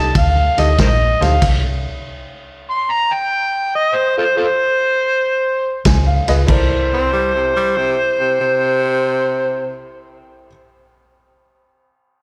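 Heard through a live venue's PA with recital-hall reverb and a faint mains hum, this soulful, laid-back electric blues shuffle at 95 BPM features a gritty, overdriven harmonica with tongue slaps and scooped notes carrying the melody in jazz style, backed by a woody upright piano with audible action noise, a round, foam-muted electric bass, and a vintage drum kit with dark cymbals and a punchy kick. The backing breaks into a stop from 1.4 s to 5.9 s while the harmonica plays on, before a bright tenor saxophone with light vibrato enters as a second line at 6.9 s.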